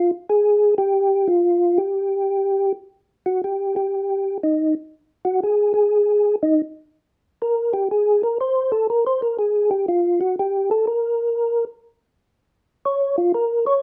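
Jazz at 121 BPM in a swung 4/4, greasy and swinging, cut from a longer piece. A mellow, flute-like tonewheel organ with clean second-harmonic percussion carries the whole 13.8 seconds, sitting up front and moving between Eb4 and Db5, with its solo stretch opening at 2.9 seconds. The organ's slow rotary speaker and chorus vibrato add a gentle shimmer inside a moderate studio reverb.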